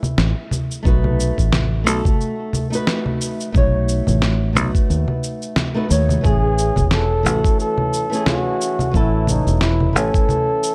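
A breathy flugelhorn takes the spotlight from 6.3 seconds, playing a jazz-style solo up front with light vibrato and a smooth top, its tone shaded by delay. Beneath it, this smooth, relaxed sunset chillout excerpt moves at 89 BPM in 4/4 with a swung sixteenth-note feel, and its harmony passes from F#m11 to B7 and then Amaj7. A dark, fingerpicked flamenco guitar supplies accompaniment throughout, with audible finger squeak and a touch of delay. A punchy fingered electric bass sits up front with a direct, foam-muted sound, while a sampler-style electronic kick drum, entering at 0.9 seconds, adds a gritty, thumpy pulse. Electronic congas, shaker and a fat snare sound compressed and tape-warm, re-recorded in a small room and placed up front. Light reverb and digital ambience wrap the mix in a warm, shadowy production.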